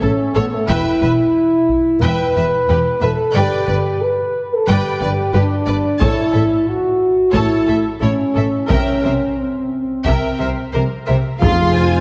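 Cinematic, epic orchestral film score at 90 BPM in 4/4, triumphant and heroic in mood, heard here as a 12-second cut from a longer piece. A French horn section sits up front with mellow, soft-attack sustained chords that sound roomy yet tight, while a symphonic violin section carries the lush, vibrato-rich melody from A4 to C6 over a focused, more distant studio violin section playing a second line in the background. Symphonic violas fill in smooth, even accompaniment, and the bass is anchored by bowed cellos and a studio double bass section with a focused, smooth top. Taiko ensemble drums struck with hard sticks in a live room appear from 0.7 to 2.0 seconds and return at 6.0 seconds, and at 11.4 seconds a mellow, soft-attack tuba and round, soft-mallet timpani join on F as the harmony turns from C7 to F minor. The whole is bathed in a wet scoring-stage reverb and heavily compressed with multiband compression for a radio sound.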